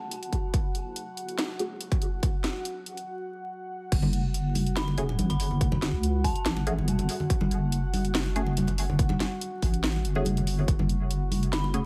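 A deep, wobbling bass sits up front through this brooding, meditative half-time dubstep excerpt at 142 BPM in F# minor, beneath a moody detuned pad with chorus and reverb, a punchy overdriven kick, a garage kit with a cracking snare, a filtered dub chord stab whose filter sweeps through the build-up before returning at 5.0 s with phaser and dub echo, hard-handed congas arriving at 4.0 s just after the drop, an eerie inharmonic synth bell in the background, and a vinyl crackle.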